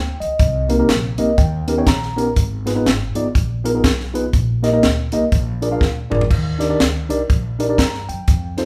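A live band plays together in a large studio with moderate reverb, in a short cut from a longer piece of uptempo gospel in Eb major at 122 BPM with a swung eighth-note feel. The mood is hopeful and soulful. A mellow tine electric piano sits up front, its clean, direct tone carrying the accompaniment through Cm7, Eb7b13 and Abm6 toward Bb7 and a resolving Ebmaj7, with a fill of its own at 0.9 seconds. Beneath it, a pizzicato upright bass gives a woody, thumpy gut-string sound that stays dark and low. The acoustic funk drum kit joins at 0.2 seconds, dry and forward, with bright cymbals, a high-tuned snare and a tight kick, and it plays a fill at 5.8 seconds.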